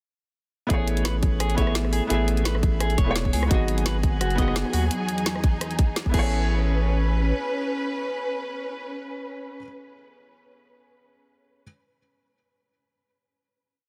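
A saturated sub bass with deep, gliding notes drives this short, warm and uplifting liquid drum and bass piece at 171 BPM in A lydian, where a tight electronic kick and a rolling two-step kit with woody snare and bright hats enter alongside it at 0.7 seconds, a felt-muted upright piano plays soft, rootless held chords with syncopated pushes through delay, a clean picked electric guitar spins an eight-step arpeggio, and a bowed string section with vibrato and portamento enters at 3.5 seconds to carry sustained chords from G#m7 through Emaj9 and back to Amaj9 into a final hit at 6.3 seconds, all in a dry, dense, heavily limited mix.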